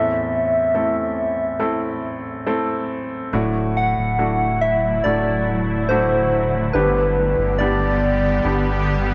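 In a straight 4/4 feel, this heartbroken, melancholic pop excerpt opens with a gentle, warbling FM synth lead singing the melody through chorus and tremolo over a clear, intimate concert grand piano with audible action noise, moving from Am to Dadd9 and then G. A deep, round sub bass enters at 3.3 s, and a cloudy, evolving granular pad with its own reverb arrives at 4.5 s to hold sustained chords. The mix sits in a wet echo chamber with a long tail.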